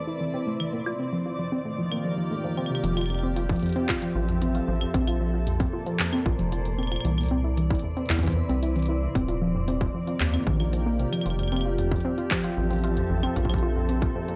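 IDM excerpt at 114 BPM in F major, tuned slightly flat, with a glitchy, playful mood: a glassy, ethereal FM pad holds mellow chords under a warbling, lo-fi pluck whose detuned arpeggios carry chorus and analog delay and a filter sweep during the first 2.8 seconds, while a twinkling granular shimmer sparkles briefly at the start; an industrial kit of claves, handclaps and crisp, filtered hats enters at 0.6 seconds and runs on from there, a rubbery, hollow square bass bounces in up front at 2.8 seconds, and a distorted electronic kick lands at 3.5 seconds, all captured in a dry, gritty hardware sound with transformer saturation and cassette-tape character.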